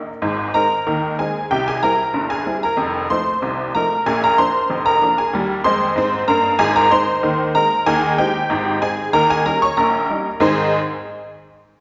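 A straight two-beat ragtime pulse drives this lively, cheerful fragment of a longer piece, played by a solo honky-tonk upright piano whose detuned, jangly, vintage tone sits bright and up front across a span from F1 to Db6, its chords stepping through Ab, C7, F7, Bb7 and Eb before returning via Eb7 to Ab at 10.4 seconds, bathed in the wet, lingering reverb of a church or concert hall.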